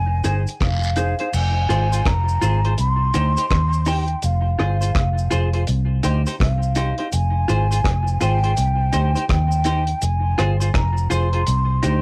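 A round, punchy, foam-muted electric bass sits up front in this hypnotic, meditative roots reggae excerpt, moving at 83 BPM in 4/4 with a swung sixteenth feel and circling between F minor and C minor chords. An airy concert flute carries the melody from the opening moment, its soft attack and vibrato colored by cassette tape and tape echo. From 0.2 seconds a clean, compressed semi-hollow electric guitar adds picked accompaniment through a lush chorus and tape echo, while a deep, dry reggae drum kit with a tight kick, rim clicks, hi-hat and crash cymbal keeps time under a rolled-off top and its own cassette tape coloring. Cabasa and guiro sit far back in the mix, with an egg shaker and group handclaps heard in a small room. The whole piece has the intimate, lightly reverberant character of a home recording on cassette, cut from a longer performance.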